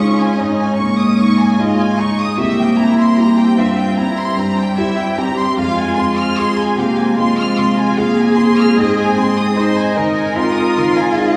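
A solo cello carries the most prominent voice in this tender, intimate neoclassical piece for piano and strings, singing a smooth, even second line with vibrato in the range of G3 to F4. Above it, a chamber violin section plays the expressive, bowed melody between Eb5 and F6, while a single viola adds focused accompaniment with a smooth top between C4 and C5. A felt-muted upright piano supplies soft, mellow accompaniment from C2 to Ab4, its audible action noise lending a natural character. Deep in the background, an analog pad holds sustained chords built from a detuned sawtooth tone with a slow attack and chorus. All five parts play from 0.0 to 11.4 seconds at 75 BPM in 4/4 with a rubato feel, tuned to A4 = 439 Hz, moving through Dbsus2, C7, Fm and Ab. The fragment, cut from a longer piece, sits in a wet concert hall reverb with a 1.9-second decay, mixed with a small room ambience.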